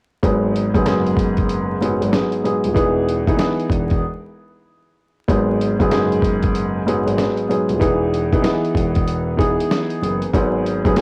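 Tough and gritty, this boom-bap hip-hop excerpt moves at 95 BPM in G# minor on swung 16ths, with a dusty, compressed sampler-style kit putting its thumpy kick, medium-tuned snare and hi-hat up front. A woody, slightly detuned upright piano, intimate and close with audible action noise and long sustain, carries the G#m7 to Emaj7 changes through cassette-tape filtering, while a boxy, mellow grand piano holds down the low bass notes, all set in small-room ambience with vinyl crackle from a home cassette recording. A break arrives at 4.0 seconds before the second section begins at 5.3 seconds.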